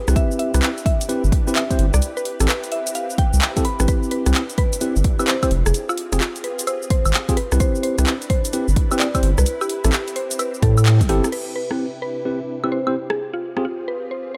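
A woody, round FM pluck plays a mellow melody over a silky string machine that holds soft chords with ensemble chorus and sidechain pumping, the pluck coloured by cassette-tape chorus and tape echo, setting a sunny, soulful two-step UK garage groove with swung sixteenths over Cmaj7, Am7 and Fmadd9 harmony. Almost at once, a clean tine electric piano through a combo amp adds echoing stabs, while a deep, thick, saturated sub bass pumps up front beneath a punchy, overdriven electronic kick and a layered house kit of bright hats, handclaps, rim clicks, shaker, woodblock and crash, both with studio reverb. After a band accent at 10.9 seconds, the kick stops at 11.1 seconds and the sub bass at 11.2, leaving the pluck, strings, piano and kit to carry the closing section of this excerpt until the piano and kit fall away at 13.6 seconds and the pluck and strings finish it together.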